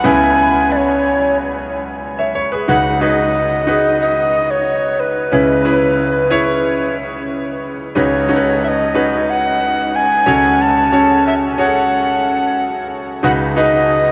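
A straight 4/4 pulse at 91 BPM carries this urgent, moody pop excerpt in C# minor, where a breathy, chiffy tenor recorder with vibrato and an analog delay sings the melody up front over a polished concert grand piano treated with lush chorus and rich in deep bass. Both play throughout the 14.1 seconds, the piano moving through C#m7, G#m7/C#, Badd9/C# and F#m/C# over a C# in the bass from 2.7 seconds onward. A huge ambient reverb with a 7.8-second tail soaks the mix, giving the short-sustained piano and the unsteady, rolled-off recorder a dreamy haze.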